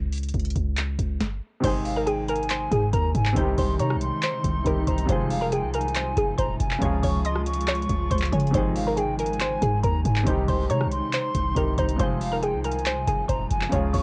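A heavy 808-style bass with a punchy, sine-based body and a fast attack opens this trap cut, joined at once by a booming analog drum machine with a deep kick, tonal snare, metallic hi-hats, handclaps, rim clicks and crash, all in a half-time feel. After a brief break that stops just before 1.6 seconds, a bouncy square-wave pluck carries the melody, its detuned, chorused tone shaped by a moving notch and a tape-worn low-pass filter, while a clear, polished concert grand piano plays short-sustained accompaniment beneath it. A pure concert flute with vibrato and tongued notes enters at 1.9 seconds as a second line, close-miked and trailed by analog delay. From 2.6 seconds a granular cloud pad adds blurred, evolving sustained chords in the background. The mood is triumphant yet wistful, and the cassette home recording keeps the room dry while lending the melodic parts a softened, lo-fi character.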